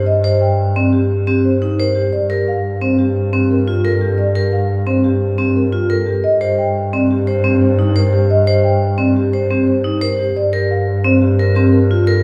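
A straight 6/4 pulse at 175 BPM drives this hypnotic, urgent fragment of classical minimalist pattern music in G minor, tuned to A4 = 444 Hz and cut from a longer piece. A bowed double bass, played by one player, holds a low G2 throughout; its tone is clear, focused and smooth on top, with vibrato, and it sits up front. The melody comes from a marimba played with soft mallets between G4 and G5, its sound mellow, round and airy. From 0.2 seconds a vibraphone struck with hard mallets adds arpeggios between C4 and C5, metallic and ringing with a medium motor vibrato, up front in a boxy small-room tone. The harmony alternates between C5/G and G minor over the bass, and the whole ensemble is heard from further back in a wet recital hall with a 1.5-second reverb.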